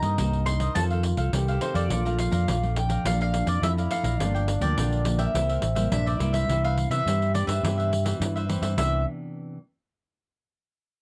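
A dry, close studio sound in a 1970s style, touched with light reverb, frames this lively, sunny fragment of samba and choro at 105 BPM in a straight 4/4. The mandolin carries the melody with a mellow, round tone from its doubled strings. Beneath it, a breathy trombone plays a second line that sounds distant and whispered, soft in attack and intimate in a jazz manner. Crisp, picked cavaquinho and a dark, fingerpicked classical nylon-string guitar sitting in the background fill out the accompaniment, while a punchy, amped fingered electric bass stands up front as the loudest part and a jingly pandeiro played with hard hands drives the percussion. The harmony moves from Cm7 through F7, Bbmaj7, Gm7 and C7 before settling into C major on a Cmaj9 at 6.5 seconds. The other parts stop by 9.0 seconds, and the guitar rings on alone until 9.6 seconds.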